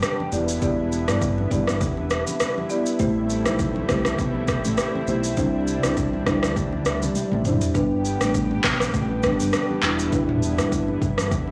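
Afrobeats at 101 BPM in G major with a breezy, sunny mood, this clip from a longer piece sets an up-front, overdriven electronic drum kit of deep kick, handclaps, rim click, shaker and toms against very quiet, close congas, while a woody, mellow soft-mallet marimba and a dark, punchy fingered electric bass both enter at 0.3 s, a lush, detuned sawtooth pad with chorus and sidechain pumping sustains chords moving from Em7 through Am7 and Cadd9 to G, and a drum fill at 7.2 s leads into the second section, heard through a blown-out, overdriven recording with light reverb and small room ambience.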